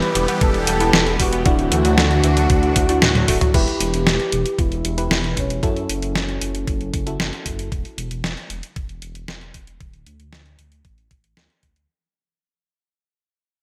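A detuned 8-bit digital drum machine sits up front in this nocturnal, driving synthwave excerpt at 115 BPM in E dorian, its medium-tuned snare, hi-hat, crash and toms bathed in gated reverb, with a thumpy, tape-colored electronic kick joining at 0.4 seconds. Beneath it, a dark detuned saw bass rumbles and beats with a deep unison tone, and from 3.5 seconds a filter sweep moves across it as the whole piece fades out. An expressive synth lead carries the melody with a smooth, vibrato-touched sound through lush chorus and delay, while a mellow FM electric piano adds round, warbling stabs until about 7.7 seconds. For the opening stretch a thick, bright unison pad holds sustained chords with chorus, phaser and sidechain pumping, and a very quiet, wave-folded analog pluck traces arpeggios before both stop as a drum fill leads into the second section. The harmony moves from Em through Dadd9 and F#m7 before dropping out and settling on D5, all framed by a moderate plate reverb and bright 1980s-style digital production.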